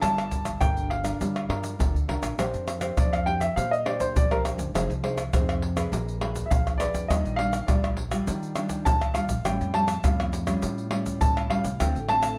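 Yearning yet lively, this samba-and-choro excerpt in Bb major moves at 102 BPM in a straight 4/4, with a warm, short-sustained baby grand piano carrying the melody and taking a solo from 2.4 s, a dark, full-bodied fingerpicked nylon-string guitar in accompaniment, a woody pizzicato upright bass, and up-front, hard-handed percussion of tube shaker, tight surdo, pandeiro and tamborim, all set in moderate studio reverb over rich chords such as Bb69, Bb7b9, Ebmaj9 and A7b13.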